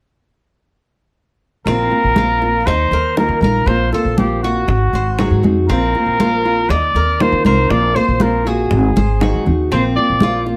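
A moderate studio room wraps this brief, relaxed, danceable slice of Cuban son and guajira, with a vintage-toned trumpet up front, carrying the melody with warm vibrato and a touch of plate reverb, from 1.7 s. Beneath it, a woody, dark pizzicato upright bass anchors a small, fingerpicked nylon-string guitar and the metallic, double-stringed arpeggios of a picked tres, all cycling over suspended chords and an Ab7. Close, damped, high-tuned congas played with soft hands and round, low-tuned bongos keep the groove, and a drum fill arrives at 9.0 s.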